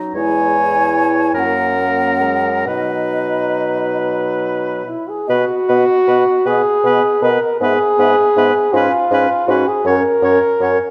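Wet recital-hall reverb surrounds this short passage from a slow romantic movement for wind quintet in B major, with the mood tender and serene. The pace is unhurried at 44-55 BPM in a rubato 6/8, and the two phrases share the same melodic material, the second beginning at 5.3 seconds. An airy, hollow concert flute carries the melody with vibrato and a soft attack, while a present oboe with light vibrato adds a second line just beneath it. The French horn stands up front as the most prominent voice in the accompaniment, a distant, roomy clarinet sits softly in the middle, and a bassoon with light vibrato anchors the bass. The harmony moves from C#m/E through F#add9 to B, then from B5 through E/G# and C#7/G#, arriving at F# at 9.9 seconds.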